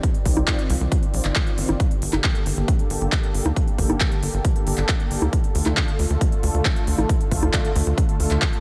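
A dry excerpt of euphoric, soaring uplifting trance in G minor at 136 BPM, led by a punchy, up-front electronic kick and a layered dance kit of crisp hats, congas and handclaps, both carrying a tape-warm character from being re-recorded in a large room. A tight, driving sequencer bass blends sawtooth and square tones into a mellow filter pluck with a fast, decaying attack and sidechain pumping. A lush, bright supersaw pad of detuned unison voices holds slow-attack chords with a long release, pumping too as a low-pass filter sweep runs across the full 8.6 seconds, moving from Cm add9 to Gm add9 at 1.8 seconds and Dm at 5.3 seconds.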